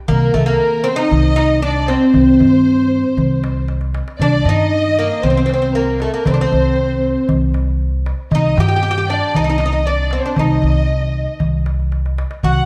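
A straight 4/4 pulse at 117 BPM, set by a small, high clay-shelled darbuka with a fill at 3.7 and 11.9 seconds, drives this longing, hypnotic Arabic maqam excerpt in C minor, where a plectrum-plucked fretless oud with double strings carries the melody up front, a dark, smooth-topped bowed violin section with vibrato sings a higher second line, and a thumpy gut-string upright bass played pizzicato anchors the low end, the ensemble heard in a moderate recital hall reverb.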